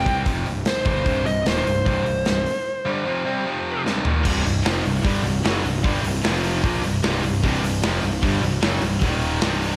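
Hard rock in C minor at 151 BPM, menacing and aggressive, in which a smooth, up-front overdriven lead guitar with slapback echo carries the melody until 3.8 s over a bright high-gain distorted guitar riff, a hollow-bodied semi-hollow guitar riff bathed in spring reverb in the background, a fuzzy picked electric bass and a big, up-front rock drum kit with a punchy kick, before a drum fill at 3.9 s leads into a new section at 4.2 s where a heavy, double-tracked high-gain guitar joins the riffing in the background, all set in light reverb and small room ambience.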